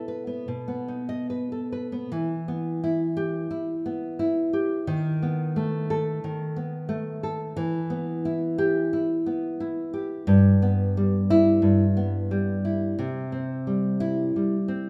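Flowing in a rubato 4/4 at 88 BPM, this nostalgic yet sunny romantic fragment in E minor, cut from a longer piece, features a dark, full-bodied solo nylon-string classical guitar, fingerpicked and up front, moving from a B chord into Em, B7/D# and Em/G before reaching C at 13.0 s, all set in a lingering recital-hall reverb.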